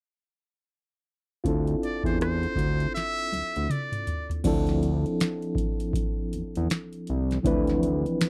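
A buzzy, metal-muted trumpet with light vibrato and scooped notes carries a short melody from 1.8 to 4.3 seconds, its slapback echo sitting over a gritty, overdriven reed electric piano with harmonic tremolo, a fat, detuned sawtooth bass and a booming analog drum machine with deep kick, crisp snare and metallic hats that plays a fill leading into the second section at 4.4 seconds, captured in a dry, close 1970s-style studio sound in this soulful, introspective neo-soul R&B excerpt cut from a longer piece.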